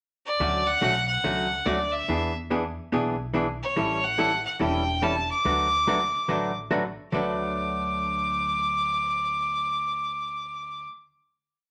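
Swung eighths at 143 BPM drive this short, playful western swing piece in D major, where a clear, bowed fiddle enters with a pickup and sits up front carrying a motif-based melody with light vibrato, over a dark, compressed hollow-body archtop picking four-to-the-bar rhythm and a woody, thumpy pizzicato upright bass lower in the mix playing a two-beat root-and-fifth line with walk-ups, all in moderate studio reverb and closing on a final chord from 7.1 s.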